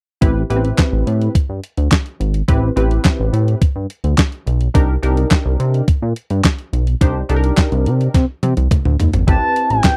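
Slick and late-night, this short cut of early-eighties boogie funk moves at 106 BPM in a straight 4/4, centred on A minor and tuned to A4 = 437 Hz. A crisp 8-bit digital drum machine sits up front with a thumpy kick, fat snare, handclaps, hi-hat and toms, its sampler-style sound tape-warm and re-recorded in a large room, and it plays a fill from 8.1 to 9.3 seconds. Alongside it, a glossy, retro chorused synth bass blends pulse-wave, sawtooth and sine tones with pulse-width modulation and a filter sweep, sustained and mellow from G#1 to C3. A punchy polysynth comp, detuned and ring-modulated with chorus, sits lower in the mix between B3 and C5 as the harmony shifts from Am9 to Cm9 at 4.7 seconds and back to Am9. At 9.3 seconds a smooth, dark synth lead enters up front with soft-attack sawtooth and triangle tones, vibrato and chorus, sounding G5 to A5 in a dry, close studio sound.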